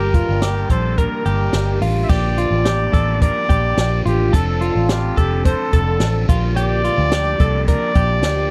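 Jangly indie pop at 108 BPM in a straight 4/4, breezy and youthful, this short excerpt moves from G minor through Bb6 and F6 chords, with a chord change at 2.1 seconds. A clear trumpet with vibrato and a smooth top carries the melody through a slapback echo, while a chiming twelve-string electric guitar picks compressed arpeggios, also with slapback echo, and a crunchy overdriven guitar adds phaser-coloured accompaniment. Underneath, a round, foam-muted vintage bass and a compact cocktail drum kit with a punchy kick, high-tuned snare and dark cymbals sit up front in a dry, close 1970s-style studio sound.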